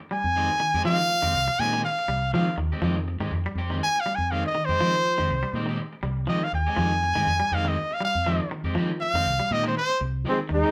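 A bright, smooth-topped trumpet leads this intense, funky afrobeat excerpt in F minor, soloing up front with vibrato over a single Fm9 chord at 121 BPM with a lightly swung sixteenth feel. Beneath it, an electric guitar at the edge of break-up plays picked stabs, a clean, twangy second guitar fingers arpeggios through spring reverb, and a round, amped fingered bass holds the low end. The band plays live in one room with moderate reverb, and near 10.3 seconds a clear, punchy trombone with scooped notes and a raspy, growling tenor saxophone enter just as the clip ends.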